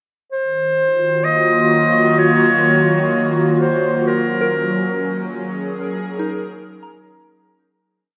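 Serene and weightless, this short ambient piece in Gb lydian at 64 BPM opens on an Ebm7 chord, with a distant, classical-style solo clarinet tracing arching motifs through shimmer reverb and diffuse delay over an airy, breathy, detuned pad of slowly shifting chords; a very quiet drone with moving, resonant overtones enters at 1.3 seconds, and a pure FM bell arrives at 4.4 seconds, its three slow arpeggio loops drifting against each other through chorus and phaser as the harmony settles on Gb and the piece fades out from 4.1 seconds into a cathedral-like reverb.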